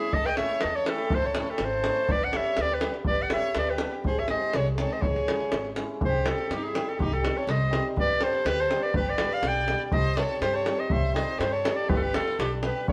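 Heard through a band playing live in a wet stone room, this fiery, restless Balkan wedding-band piece at 123 BPM in 2/4 puts a bright, classical-style clarinet solo up front, alongside a soft-attacked bowed violin rich in vibrato and portamento, a shimmering, ringing hammered dulcimer, a woody pizzicato upright bass entering at 0.1 seconds and a tight, band-limited davul, as the harmony moves from A through G and G# to C#m before the second section at 6.0 seconds turns between Cm and G.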